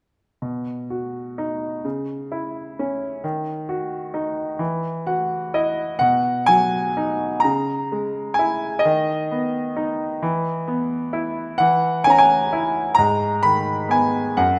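In a rubato 6/8, this tender, peaceful passage of lyrical classical solo piano, cut from a longer piece, features a brilliant, open grand piano placed up front with short sustain in a moderate scoring-stage reverb; the piano adds a fill from 4.6 to 6.0 seconds before the second section begins.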